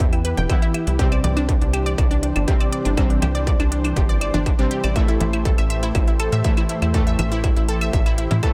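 Cinematic and melancholic, this short excerpt of melodic techno moves at 121 BPM in a straight 4/4, built on chords of Em, Cadd9 and Am7. A distorted, up-front electronic kick leads alongside electronic claves, congas and a smooth hi-hat, while a tight, driving sawtooth sequencer bass pumps under full-bodied detuned pluck arpeggios with tape echo. Gritty, brassy synth stabs carrying chorus and tape echo cut through, and a thick, warbling vintage pad holds sustained chords in the background, all in a dry, close sound.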